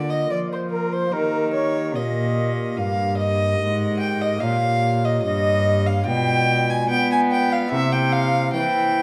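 A reedy, gut-string violin carries the melody up close in this short, grave baroque-style sonata movement, which is cut from a longer piece. Beside it, a wooden baroque flute plays the second line in the same register, its pure, tongued notes touched with vibrato and set further back in the space. A period-style cello, nasal and bowed with light vibrato, holds the bass line up front, while a pipe organ on stopped flute stops fills in the continuo with a hollow, mellow voicing and a soft chiff at the start of each note. At a steady 73 BPM in a straight 4/4, the music moves in a flowing way over a harmony that starts on Bb/D and Eb, darkens through Gdim/Bb at 4.4 seconds and Bdim7 at 6.1 seconds, and arrives on C7 at 7.7 seconds. All four parts play throughout the nine seconds, and a moderate recital-hall reverb and a dark production give the whole a sombre, intimate colour.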